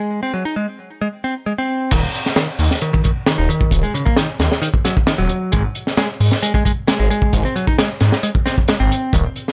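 Breakbeat excerpt at 133 BPM, gritty and raw, opening with a bright, growly picked electric bass riff roughened by overdrive, 12-bit sampler grit and digital delay. At 1.9 seconds the drop hits as a crunchy, saturated breakbeat kit with a high-tuned snare, tight kick and dark cymbals arrives alongside a swirling, thick detuned saw bass run through a phaser. The mix is dry and up front, with the harmony on Ab, breaking off at the drop before Ab returns at 5.5 seconds.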